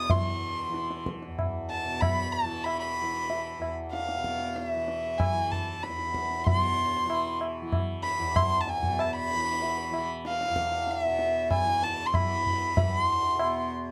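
A dark, intimate violin and a bright, buzzing tanpura drone open this devotional, radiant Hindustani classical fragment, joined at 0.1 seconds by low-tuned acoustic tabla with a short ring in a small room, all moving at 95 BPM in 5/4 with a straight feel. The single bowed violin sits close and up front, singing between E5 and D#6 with light vibrato, soft attacks and an airy bow, while the softly plucked tanpura shimmers beneath from E2 to E3. Light reverb frames a warm production, and the music moves into a new section at 6.5 seconds.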